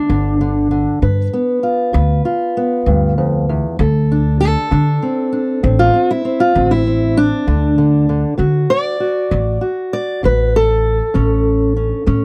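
Acoustic country blues with a gritty, swaggering mood, this short excerpt moves at 65 BPM in a straight-feeling 12/8, with the tuning set slightly sharp at A4 = 441 Hz. A fingerpicked steel-string acoustic guitar carries the melody and takes a solo across the whole 12.2 seconds, its tone dark and woody with the dull bite of old strings. An upright bass enters at 0.1 seconds, played pizzicato on steel strings, giving a deep, shadowy foundation beneath the guitar. The harmony opens on G7, shifts to D7 at 3.8 seconds, and lands on A at 11.2 seconds. Both instruments sit up front in a dry, close 1970s-style studio sound with little reverb, giving the pair an intimate, in-the-room presence.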